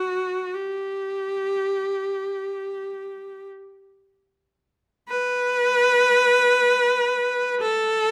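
A lone viola carries this short classical fragment, its bowed tone clear and focused with vibrato, placed close and up front as a single player shapes each phrase. The piece moves in free time in G major, tuned slightly below standard pitch at A4 = 439 Hz, giving it an expressive flow. The mood is nostalgic and lyrical, with the melody confined to a narrow span from F#4 to B4. A moderate stone-room reverb, with a decay of about 1.2 seconds, lends the instrument a resonant halo. An opening section gives way to a second idea at 5.1 seconds, and the fragment, cut from a longer work, ends at 8.1 seconds.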